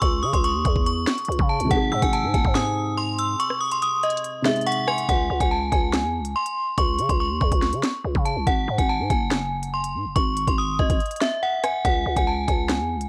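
A half-time drill hip hop groove of knocking kick, sharp snare, rim click and crisp hats drives this tense, cold excerpt, where a ringing, inharmonic FM bell melody with chorus sits up front over a growling, buzzy 808-style bass, while a soft, felt-muted upright piano with audible action noise and a second bright bell line through analog delay colour the opening until 5.1 seconds, the kick drops out briefly before that point, and a short break arrives at 11.0 seconds, all captured as a dry home recording on cassette.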